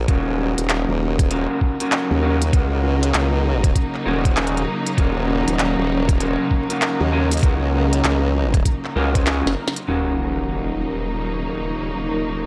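A saturated, up-front formant-sweep wobble bass drives this funky, gritty glitch hop excerpt in Eb minor at 98 BPM with a swung 16th feel, joined by a lush, vibrato-rich string section and twangy, slightly broken-up electric guitar stabs through a small old amp, both roughened with 12-bit sampler grit and sidechain pumping, over a thumpy, pitched-down kick and a glitchy kit of tiny snare, clicky hats, handclaps and rim clicks in a large room, with vinyl crackle beneath, until a drum fill at 9.3 seconds gives way at 9.9 seconds to a background sub drop and an airy, breathy pad.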